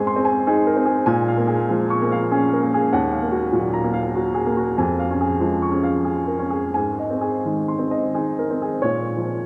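Neoclassical minimalist piano in a reflective, melancholic mood, this brief fragment of a longer piece moves in a free, rubato three-beat lilt. A solo upright piano with a woody, polished tone sits up front from 0.0 to 9.5 s, spanning Eb2 to Db6 as the harmony drifts through Ab, Bbm7, Ebmadd9, Db/F and back to Ab before settling on Bbm. A long, wet cathedral reverb surrounds the piano with the resonance of a church or concert hall.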